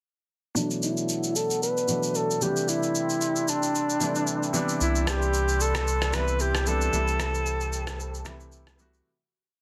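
A deep, soulful amapiano piece built as a single breakdown under a filter sweep, with a clear alto saxophone carrying a hook-based solo melody up front, its scooped notes and vibrato touched by digital delay. A polished, intimate grand piano with audible action noise pushes drop-voiced chords through E9sus4, D9sus4, Cmaj9 and Am7/C, while a hollow, flute-like pad with chorus hangs in the background and a gritty, sampler-style groove of steady shaker, soft kick and syncopated rim swings beneath. A round sine sub bass enters at 4.8 seconds, and the dense, heavily limited mix in light reverb fades out from 6.9 seconds.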